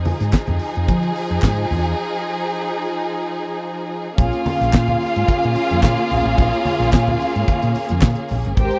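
A dry, close 1970s-style studio sound frames this danceable, driving disco cut at 109 BPM, where a damped drum kit with a fat snare and tight kick sits up front alongside a round, hollow-body fingered electric bass, bright low-tuned congas, crisp background handclaps and a clear, focused bowed string section holding sustained chords over Fm7, with a break at 2.0 seconds before a dark, lush second string line joins at 4.2 seconds as the harmony moves to Bbm7.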